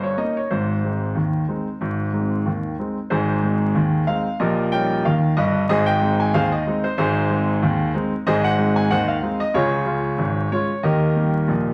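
Ragtime in a jaunty, playful 2/4 with a light swing, cut from a longer piece and carried entirely by a solo baby grand piano that sounds clear, open and up front, its notes ringing with long sustain across a span from G1 to Ab5. A wet studio reverb and a layer of vinyl crackle surround the playing. A short opening phrase gives way to a restatement at 3.1 seconds, and the harmony moves from Eb7 through Ab to Db before landing on Eb at 10.8 seconds.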